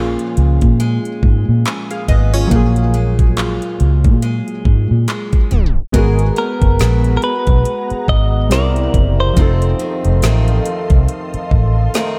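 Chorused analog keys with a round, detuned sawtooth body and picked arpeggios from a parlour-size steel-string acoustic guitar with tape echo open this sensual, late-night contemporary R&B excerpt, over a dark, foam-muted fingered electric bass and an up-front, electronic drum kit with a knocking kick, woody snare, metallic hats and handclaps, all carrying a swung sixteenth-note feel. A tape stop at 5.5 seconds marks the turn into the second section, where a bright, twangy, direct-recorded clean electric guitar takes up the melody with tape echo at 6.4 seconds. An ethereal, airy pad with ensemble chorus and sidechain pumping enters with a slow attack under it at 6.9 seconds, all set in light digital ambience.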